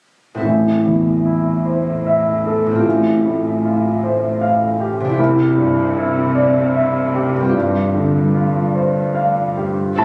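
A bright, brilliant grand piano sits up front in this excerpt from a longer cinematic film score, its open, long-sustaining accompaniment carrying a tender, uplifting mood at 76 BPM in a rubato 3/4, tuned to A4 = 438 Hz. A concert harp begins at 0.3 s with ringing, fingerpicked arpeggios. From 0.4 s, a rich, focused cello section supplies a lush bowed bass line with vibrato and a smooth top. The harmony moves through Am, Fadd9/A, Cadd9 and G7sus4. A distant violin section enters as a second line only at 10.0 s, sounding warm and expressive with vibrato. The orchestra sits in moderate scoring-stage reverb, but the sound was captured on a phone in a room with club reverb, leaving lossy compression artefacts.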